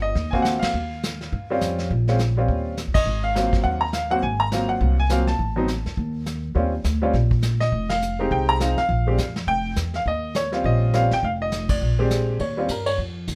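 A light reverb gives this brisk swinging jazz piano trio passage an intimate studio feel, cut from a longer piece and relaxed and playful in mood. A clear, up-front baby grand with short sustain carries the melody over lush thirteenth chords, while a woody, thumpy pizzicato upright bass anchors the low end. A dark, smooth brush kit with a rolled-off top enters at 0.2 s, and the whole band hits shared accents at 0.6 s and 2.9 s.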